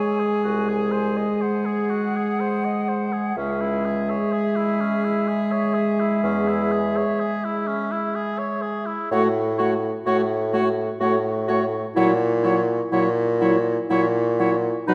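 Serene and warm, this slow romantic classical movement for wind quintet in C# minor drifts at 62 BPM in a rubato 3/4: a hollow, pure-toned flute carries the melody with vibrato over a lightly vibrant oboe second line, while a clear, soft-attacked clarinet and a smooth, mellow French horn accompany, and an up-front bassoon bass enters at 0.4 s, the whole quintet set in a dark, wet concert hall.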